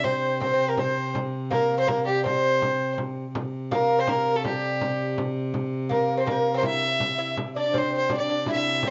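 Ancient and rustic in mood, this brief medieval dance in triple time is cut from a longer piece, and its opening passage returns at 3.4 s. A clear, earthy fiddle carries the melody, bowed by one player and sitting close and up front. A very quiet bass recorder shares the fiddle's register as a second line, its breathy, hollow tone marked by tongued chiff, while a fingerpicked lute with bright double nylon strings adds a delicate second line below, touched by tape echo. Beneath them, a rich viola da gamba holds a ringing drone on C3 with light vibrato and a soft attack. A small acoustic frame drum supplies the percussion with the sound of a small room. The whole recording has a homemade cassette character with dulled highs and a moderate studio reverb.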